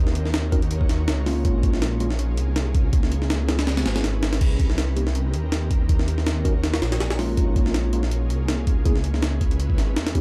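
This drum and bass track, in a jungle vein, is dark and atmospheric and is cut from a longer piece, riding a lightly swung groove. A thick, detuned saw bass with tube saturation sits up front from the start, its beating, menacing tone underpinning a cycle of minor seventh chords. Behind it an ethereal, airy pad drifts with ensemble chorus, built-in reverb and vintage 12-bit sampler grit. The sampler-style jungle kit arrives at 0.1 seconds, compressed and pitched up, its thumpy kick, medium-tuned snare, hi-hat and crash cymbal re-recorded in a small room and placed forward in the mix. From 0.5 seconds a mellow tine electric piano adds clean stabs through dub echo, its tone suggesting built-in speakers. The passage is a single drop that begins again at 4.4 seconds, captured as a dry, rough hardware recording with digital ambience.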